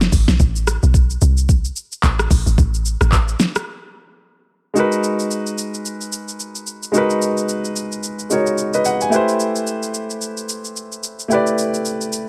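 This amapiano excerpt opens on a deep, round log drum bass with a fast attack and dark decay, playing up front alongside an electronic R&B drum kit of soft kick, fat snare, smooth hi-hats, handclaps, rim clicks and shaker. The groove sits at 110 BPM in 4/4 with a 58% swing on the sixteenths, giving a hypnotic, late-night feel over an A minor harmony. The log drum bass drops out at 3.4 seconds, and a short break follows before a vintage grand piano enters at 4.7 seconds, its tone warm and smooth in the accompaniment. From there the harmony moves to G#m7 and later to Am7 at 9.1 seconds while the tape-warm drums carry on to the end. The sound sits in a digital ambience, with bass, drums and piano all placed close and present.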